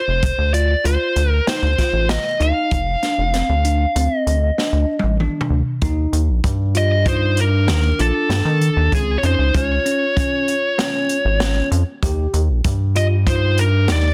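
Moving in a straight 5/4 at 97 BPM, this intricate, driving progressive instrumental excerpt puts a dark, distorted fuzz lead guitar up front over a rubbery, hollow square-wave bass and an open acoustic jazz kit with a boomy kick, while a bell-like tine electric piano plays arpeggios. A drum fill arrives at 4.6 seconds, the harmony shifts from F5 to Ebmaj7 at 5.8 seconds and then on to Db and Eb, and a ringing vibraphone with medium mallets enters in the background at 6.8 seconds, all set in light small-room reverb with a dense, heavily limited modern master.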